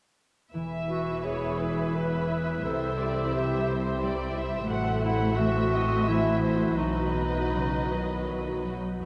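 A solo clarinet, vintage in colour and soft in attack, carries a second line from 0.9 s to 8.6 s in this serene, tender passage from a slow romantic movement for symphony orchestra. Two con sordino violin sections, dark and distant with vibrato, share the melody and a second line. Beneath them, muted violas, cellos and double basses play in the same veiled, bowed colour, with the lower strings holding the bass. A concert harp, fingerpicked and ringing in the background, adds arpeggios. The music moves in 3/4 at about 79-91 BPM with a flexible rubato feel, drifting through E, C, F#m7b5/A and B, and the whole performance is set in a vast, echoing cathedral space.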